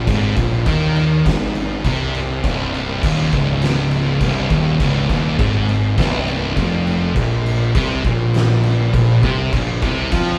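Stoner and doom metal with an ominous, brooding mood, this excerpt moves through Ab5, Cm and Bb5 as two thick fuzz guitars grind out the riff, one dark and set back, the other up front and distorted. A growly, overdriven picked bass sits beneath them, while an oversized low-tuned drum kit, up front with a punchy kick, fat snare, dark cymbals and a gritty, saturated edge, plays from 0.1 to 10.3 seconds. The band plays live in one room, held in a moderate large studio reverb.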